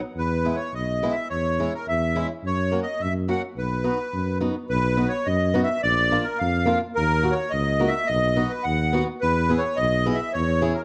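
A reedy, sweet accordion with a light tremolo tuning carries the melody up front from 0.2 seconds in this jolly, bouncy alpine folk dance-band piece in 2/4, cut from a longer performance. Beneath it, a mellow tuba with a smooth top and light vibrato plays the bass line in a classical style, sitting up front. A dark, boxy fingerpicked acoustic guitar adds swing-style accompaniment, all within a light reverb and a dark, warm production.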